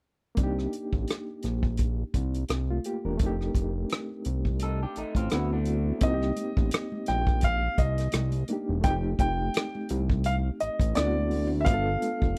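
R&B and neo-soul at 85 BPM in C dorian, this introspective, sultry fragment from a longer piece sets a barky, lightly overdriven electric piano with fast tremolo and a thick, saturated analog bass over a tight soul drum kit of hi-hat, kick and rim click, with a slightly broken-up lo-fi electric guitar line appearing briefly at 4.6 seconds before an intimate grand piano melody with slapback echo and audible action noise enters at 6.0 seconds alongside very quiet, ringing high-tuned congas, all in a dry space over Cm9, F9, D13 and G9 chords.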